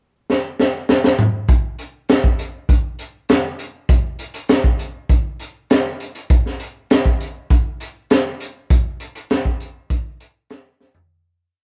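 A live band sound fills one small room with light reverb, where a crunchy, saturated breakbeat drum kit sits up front with a dark, rolled-off top. This mysterious, dark rock piece moves at 100 BPM in a straight 4/4 pop groove. After an opening fill from 0.3 seconds, the gritty kit settles into a riff of hi-hat, punchy kick, high-tuned snare and toms, then fades out from 8.7 seconds, with a last fill at 10.8 seconds.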